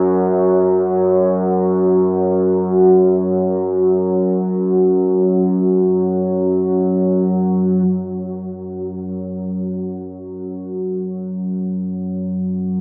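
An analog drone plays alone in free time, its sawtooth and pulse-wave tones shifting through pulse-width modulation, with a slow attack, long release and a chorus sheen, sitting up front in a low register from F#2 to F#3. The mood is dark and cavernous, wrapped in a huge, wet ambient reverb with an 8.0-second tail, yet heard through a small-speaker sound. This ambient fragment of a longer piece moves into a new section at 7.9 seconds.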